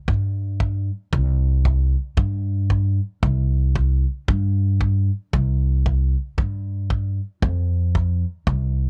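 Acoustic country blues with a laid-back, rollicking swing at 114 BPM, this short cut from a longer piece pairs a woody, pizzicato upright bass on steel strings with a punchy, rolled-off kick drum played with brushes, both sitting up front from 0.1 seconds in a dry, close 1970s-style studio sound.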